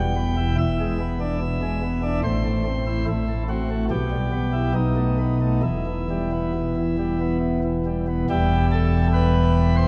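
Grave and dark, this short classical chorale-style fragment, cut from a longer piece, features a solo pipe organ sounding a full principal chorus with baroque voicing and audible chiff, up front in a wet church reverb of 2.9 seconds, moving rubato in 3/4 at 67-73 BPM through E minor harmony from Em and E7 to Am, F#dim/A and B7 before settling on Em at 5.6 seconds.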